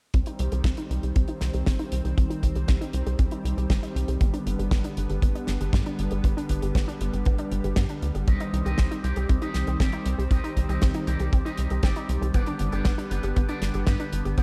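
A steady, straight 4/4 groove at 118 BPM drives this nostalgic, bittersweet italo disco excerpt in C harmonic minor: an up-front, tight kick and a damped 70s kit of hi-hat and medium-tuned snare sit in studio reverb beneath a punchy, saturated sequencer bass. A lush, detuned unison pad holds sustained chords over a Cm to G progression, while a round analog pluck plays arpeggios with chorus, delay, 12-bit sampler grit and a filter sweep running throughout. At 8.3 s a clean, twangy electric guitar with an envelope filter adds picked stabs through chorus and delay, all set in a small room with a dark, warm production.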